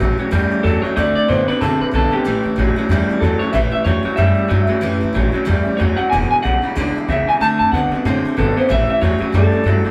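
A twangy, lo-fi electric guitar melody through a small old amp enters up front at 0.6 s over a second slightly broken-up electric guitar riff, both bathed in spring reverb, while a thumpy, woody upright bass on gut strings and a bright, full-bodied jumbo acoustic guitar drive this rowdy, retro rockabilly cut at a swung 186 BPM in A mixolydian, moving through A7, D7 and E7 with the band playing live in one room of moderate studio ambience.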